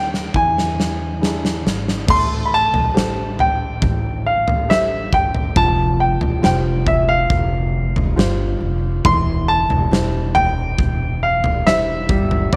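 Light reverb and small-room ambience frame this heartbroken, longing pop ballad fragment, where a polished, up-front grand piano with slapback echo carries the high melody over a soft, felt-muted upright piano, a woody, thumpy pizzicato upright bass on gut strings, and a huge arena drum kit with punchy kick and bright cymbals that opens with a fill running to 2.1 seconds.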